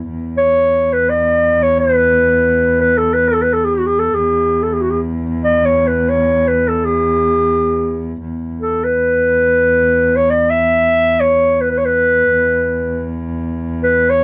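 A punchy, roomy clarinet sits up front, playing a passionate classical-style solo melody in free time, entering at 0.4 seconds over an earthy bowed cello drone on E with light vibrato and a smooth top, in this Arabic maqam rast piece on E, cut from a longer work and captured in a close, dry 1970s-style studio with a small room's moderate reverb.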